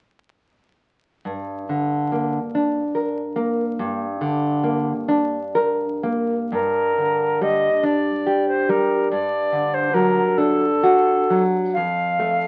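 Romantic duo for alto recorder and classical guitar in G minor, elegiac and melancholic, moving slowly in 6/8 at 39-49 BPM counted in dotted quarters, with a free, rubato feel. The nylon-string guitar begins alone at 1.3 seconds as accompaniment, fingerpicked and dark, with audible finger squeak, and sits up front. At 6.5 seconds the alto recorder enters with the melody, airy and woody, with vibrato, a soft attack and rolled-off highs, also placed up front. The harmony rests on G minor before shifting to D over G and then to a rootless D minor over F. The duo is bathed in a wet studio reverb and heard through the crackle of a very old 78 rpm record with a sharply limited top end, and the passage is cut from a longer piece.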